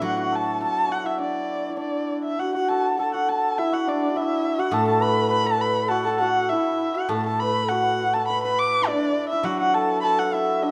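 Set in a moderate recital hall reverb, this festive, graceful fragment of Chinese traditional chamber music moves at a rubato 102 BPM in 2/4, led up front by a dark, woody solo erhu singing the melody with vibrato and portamento, while a shimmering hammered dulcimer carries a ringing second line, a breathy, bamboo-toned low xiao enters at 1.8 seconds with its own soft-edged, vibrato-laden counter-line, and a silvery fingerpicked steel-string zither supplies quiet accompaniment that drops out at 1.8 seconds and returns at 4.7 seconds.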